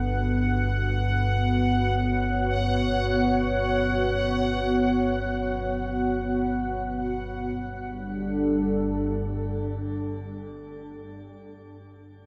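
Ominous and dark, this dark ambient drone unfolds in free time, a short passage cut from a longer piece. Up front, a moody analog pad of detuned sawtooth and triangle tones with a sub octave holds sustained chords with a slow attack, colored by chorus and shimmer reverb. Beneath it, a deep rumbling drone sits low and steady, its long release and built-in reverb thickening the gloom. A bubbling texture of resonant, detuned sawtooth tones with random filter steps hovers high above, drifting through chorus and shimmer until it falls away at 7.6 seconds. Around the 7.5-second mark the harmony moves from B minor to a bare G5, while the huge, wet reverb stretches every tail into a vast, cavernous space.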